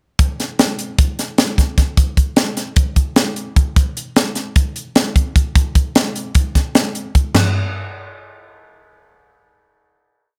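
This is a short, complete rock piece for solo drum kit, wistful yet playful in mood, set in a straight-feeling 9/8 that gives it an off-kilter lilt. A crisp fusion kit enters at 0.2 s and sits up front, working through crash cymbal, hi-hat, kick, snare and toms in a nimble nine-beat groove. The high-tuned snare cracks brightly against a punchy kick, while the dark cymbals keep the top end from turning harsh. The acoustic kit sounds polished and airy in a studio room, with a light reverb around it. The drumming runs until 7.4 s, with a final hit at 7.3 s that rings out until the piece closes at 10.4 s.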